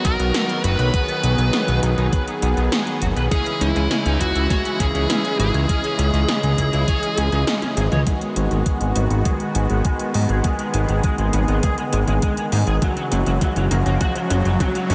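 A straight 4/4 pulse at 101 BPM drives this cinematic synthwave excerpt in G# minor, where a thumpy, overdriven electronic kick and tape-toned 80s pad drums with a gated snare, metallic hats and fills carry a fat, detuned sawtooth bass and a smooth, evolving supersaw that both pump with the sidechain, while a dark overdriven lead guitar plays a melody through analog delay until 7.4 s, a twangy, slightly broken-up electric guitar riff shimmers with chorus and delay and gets a filter sweep from 8.1 s after the kick briefly drops out, and a very quiet riser enters at 11.2 s, the whole mix soaked in a huge, dreamy ambient reverb.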